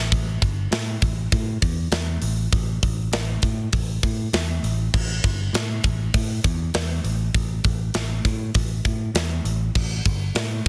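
A picked electric bass opens this heavy metal excerpt, growly and punchy, sitting up front in a low register between G1 and A2. A tight metal drum kit joins at 0.1 seconds with crash cymbal, hi-hat, kick drum and snare drum, its bright cymbals, medium-tuned snare and tight kick sounding polished and airy. The groove holds a straight 4/4 at 100 BPM, and the mood is relentless and dark. Both parts stay close and forward in a dense, heavily limited modern master with little reverb. Bass and drums carry the passage together until it is cut off at 10.7 seconds.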